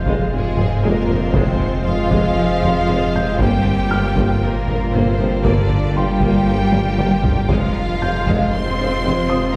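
A wet scoring-stage reverb places this tense, futuristic cue further back in the room, blending symphonic strings, brass and electronics into one deep, cinematic wash. At 117 BPM in a straight 4/4, this hybrid orchestral and electronic film-score passage in F dorian moves from Fm to Gm7 at 3.4 seconds and back to Fm at 7.5 seconds. A lush, focused violin section carries the melody with vibrato over a smoother, more distant second violin line, while an even viola section, a bowed cello section and a double bass section fill out the body and low end beneath. A distant, roomy French horn section holds sustained chords alongside a very quiet organ-like drone whose detuned, ring-modulated tone enters at 0.2 seconds, and a thick, saturated sub bass and a very quiet, punchy tuba reinforce the bass. A soft, felt-muted upright piano adds a mellow high texture through digital delay, with its action noise audible, and band-limited taiko drums struck with hard sticks drive the cue, playing a fill between 6.7 and 7.5 seconds before stopping at 8.7 seconds.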